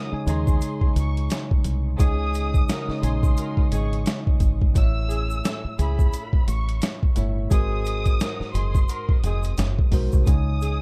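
Boom-bap hip-hop at 87 BPM with a swung 16th feel and a confident, warm mood, cut from a longer piece and built on a gritty, compressed sampler-style drum kit with a thumpy kick, sitting up front beside a round, punchy, foam-muted dub bass that enters at 0.1 seconds. A bell-like tine electric piano with cassette-tape coloring carries the accompaniment through Dbsus2, A and Ab7 chords, while a filtered violin section with soft-attack vibrato floats the high melody and a tight, mellow saxophone section adds jazz-style stabs, both touched by tape echo. A grainy egg shaker sits in the background from 0.3 seconds, and the dark production keeps the room nearly dry.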